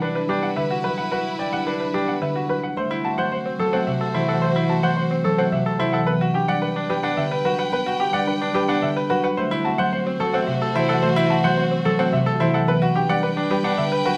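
Classical minimalist pattern music in a bright, propulsive 3/4 at 109 BPM in D mixolydian, this excerpt sets a clear, worn grand piano melody with short sustain over a mellow, ringing fingerpicked concert harp and a brilliant second grand piano whose up-front arpeggios carry audible action noise and deep bass, while a dark chamber violin section holds soft-attack chords with light vibrato, all cycling through G and D7 harmonies in an intimate, closely miked space with light reverb.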